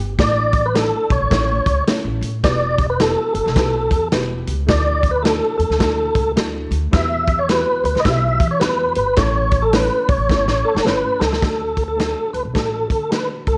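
An upright bass opens this joyful, danceable slice of uptempo 1960s-style soul at 107 BPM in D major, its woody, pizzicato low end joined at 0.2 seconds by a punchy, up-front drum kit with a natural studio-room sound and a touch of vintage sampler grit, and a dark, worn upright piano that is boxy and slightly detuned, with audible action noise. Over a swung 4/4 groove, a round, mellow tonewheel organ carries the melody up front, with key click, chorus vibrato, fast rotary speaker and slapback echo. The harmony moves from Asus4 through Emadd9 and Dadd9 before a drum fill at 10.3 seconds leads into a new section landing on D at 11.4 seconds, all set in light reverb.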